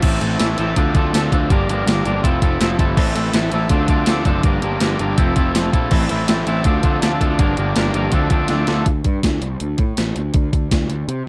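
A brisk, straight 4/4 drive at 163 BPM comes from an up-front, overdriven digital drum machine, with a thumpy kick, a gated-reverb snare, hi-hat, crash and tambourine, plus a fill at 8.5 seconds. In this moody, restless indie rock excerpt in D minor, a bright, crunchy picked guitar and a clean, twangy fingered guitar with lush chorus and slapback echo play riffs over Am, Dm7, Gm7 and Fmaj7 until 8.9 seconds. From there the punchy fuzz bass and drums carry on alone over D5 and Csus2/D until 11.2 seconds, all in a dark production with light reverb.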